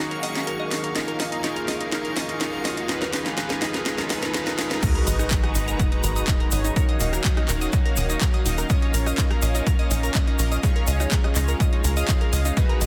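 Progressive house at 124 BPM, expansive and driving, this short cut from a longer piece opens with a build-up over Ebm7, Bbm and Db, where a house drum kit with cracking snare and bright hats plays a fill while a riser climbs in the background and a reversed, dreamy texture glimmers high up until 4.8 seconds. A glassy, crystalline wavetable pluck spins arpeggios through chorus and tape echo, a retro, glossy polysynth with a filter sweep punches out stabs, and a detuned supersaw swell holds sustained chords behind them through a phaser. A tight, nasal sequencer bass sits up front from the start, pumping with the sidechain alongside the synths. At 4.8 seconds the drop lands on Abm7 with an impact and sub drop, and an overdriven, punchy electronic kick sits up front in the mix as a grainy, close egg shaker joins the groove. The dense, heavily limited master carries only light reverb.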